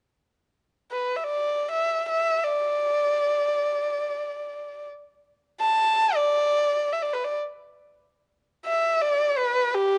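A single erhu carries this short passage of Chinese traditional music, entering at 0.9 s and playing solo to the end at 10.0 s. Its tone is dark and intimate, with a soft attack, an airy bowed quality, vibrato and gliding portamento as it moves between G4 and A5. The music unfolds in free time in the D zhi mode, tuned to A4 = 440 Hz, and carries a mood that is at once festive and pastoral. A first section gives way to a second at 7.5 s, and the clip is cut from a longer piece. Close, detailed microphones keep the player up front, with a light reverb around the sound.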